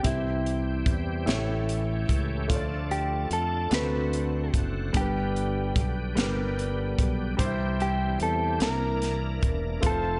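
A slow, uplifting gospel excerpt in 6/8 at 49 BPM in C major opens with all five parts together: a dark, compressed clean electric guitar carries the melody through spring reverb, an intimate grand piano with audible action noise accompanies, a bright, shouting tonewheel organ holds lightly overdriven chords through slow rotary speaker and chorus vibrato, a growly fingered bass sits up front, and a crisp fusion kit with a high-tuned snare and punchy kick drives the jubilant feel as the chords move from C through A7, Dm, D7 and G, return to C, and then settle on C9 near 8.6 seconds.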